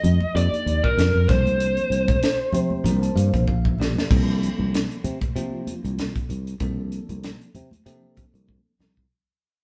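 A moderately reverberant stone room holds this funky, slick electric jazz fusion excerpt, played live by a band together at 96 BPM in 4/4 with a light sixteenth-note swing over F13sus4 and C13sus4 chords. Up front, a dark, lo-fi overdriven lead guitar states a brief picked melody that stops at 3.4 seconds. A growly fretless bass and a crisp kit with bright cymbals, a high-tuned snare and a punchy kick drive the groove, while thin-skinned congas and a bell-like tine electric piano sit in the background. The piano fills from 2.2 seconds, drum fills mark each section's close, and the remaining parts fade out from 4.1 seconds.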